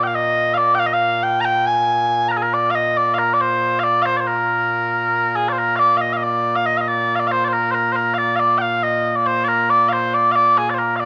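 Stirring and proud, this short cut from a longer piece of Scottish traditional pipe music moves in a straight 6/8 at 92 BPM in Bb mixolydian. A solo set of small bagpipes plays up front throughout, its mellow, sweet tone sounding continuous with a touch of vibrato and a cassette-tape character. A moderate spring reverb frames this home recording, with the tune shifting to a new section at 5.6 seconds before the clip ends at 11.1 seconds.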